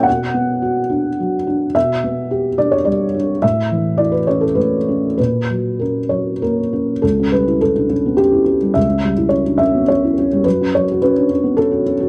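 A rubato 3/4 pulse at 106 BPM carries this reflective, wistful neoclassical minimalist excerpt, where a lone felt-muted upright piano, soft and boxy with thick felt and audible action noise, sits up front in a small room and a dry, close 1970s-style studio sound, moving from Bm through G/B, A and F#/A# before shifting at 7.0 seconds to C#dim and settling on F#sus4 at 10.4 seconds.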